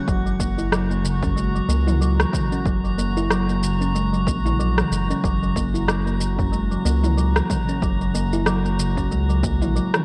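A woody, hollow-toned kalimba leads this earthy, peaceful organic downtempo fragment, its soft fingertip-plucked arpeggios sitting up front through a low-pass filter sweep and digital delay. Beneath it, a round, deep analog bass with a nasal edge pumps against the sidechain, while a punchy, overdriven electronic kick and a layered, overdriven deep house kit of rim click, shaker and toms hold a 93 BPM groove in 4/4 with a light 16th-note swing. A glassy texture of drifting overtones floats higher, calm and slow to bloom, its chorus and built-in reverb adding shimmer. A small acoustic udu sounds briefly at 1.2 and 6.4 seconds from a small room in the background. The whole fragment rests on an F#7 chord in F# mixolydian, bathed in a lush hall reverb and the worn, warbling pitch drift of old cassette tape.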